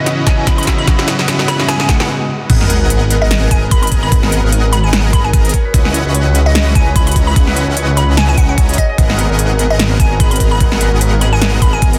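At 148 BPM in 4/4 with a half-time feel and a light swing on the sixteenths, this emotional, dreamy future bass clip in G# minor opens on a build-up, with a drum fill and a riser in the background while a glassy, crystalline wavetable pluck carries the melody through a filter sweep, bathed in chorus and dub echo. A bell-like tine electric piano with lush chorus and tape echo supplies C#m11 harmony until 2.3 seconds, and a huge, detuned supersaw riff, compressed and low-pass filtered with a touch of vibrato, pumps under the sidechain from the start. After a brief stop, the drop lands at 2.5 seconds with an impact and sub drop, and the harmony moves between G#m9 and C#m11. Here a thick, mellow detuned saw bass sits up front with chorus, while a concert harp, fingerpicked and ringing in the background, adds arpeggios through tape echo. A big-room kit with a punchy snare, crisp hats and crashes, overdriven and re-recorded in a large room, runs from the opening moments, joined shortly after by a knocking electronic kick that drives hard up front. 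Light digital ambience surrounds a dense, heavily limited modern master.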